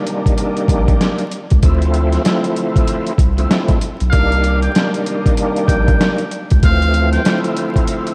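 An overdriven tonewheel organ opens this reflective, moody boom-bap hip-hop fragment, its thick, gritty chords carrying key click, chorus vibrato and a slow rotary speaker up front in the mix. A compressed, pitched-down, tape-warm sampler-style drum kit arrives at 0.1 seconds with a thumpy kick, a medium-tuned snare and hi-hat, the groove sitting at 96 BPM in 4/4 with a 61% swing on the sixteenths. A soft, round dub sub bass enters at 0.7 seconds, its deep sustained tone anchoring the harmony as it moves between Cm7 and Dm7 in C dorian. At 4.1 seconds a trumpet with a metal mute takes the melody, playing a brief, buzzy jazz-style line with vibrato and a smooth top, trailed by a diffuse ambient delay. The whole mix is dreamy and soaked in a lush hall reverb, with vinyl crackle adding a dusty feel to this cut from a longer piece.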